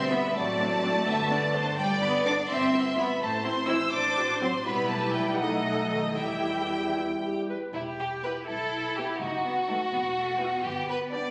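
In a rubato 6/8 at 83 dotted-quarter beats per minute, this quick, dramatic and stormy classical-period movement in E minor for symphony orchestra, cut from a longer piece, sets a dark, woody violin section on the melody over a rich, focused second violin line that sits up front. A warm French horn section holds tight chords until 7.5 seconds, while a background viola section gives expressive accompaniment and a clear, even cello section and a soft-attacked double bass section supply a distant bass, all strings bowed with vibrato. Heard through a phone in the room with a wet scoring-stage reverb, the harmony moves through chords such as Am, F#dim/A and B7 before resolving to Em.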